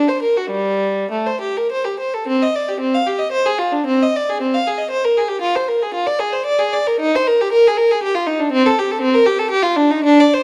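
A single bowed violin carries this brief, introspective passage from a baroque-style suite movement in C minor, its clear, smooth tone shaded with vibrato as it moves between G3 and F5 over the full 10.4 seconds. The solemn line sits in 3/4 with a rubato feel, the pulse hovering between 101 and 123 BPM, and an opening phrase gives way at 2.3 seconds to a return of the same material. Heard close and up front, the even playing is framed by a dark production and moderate recital-hall reverb.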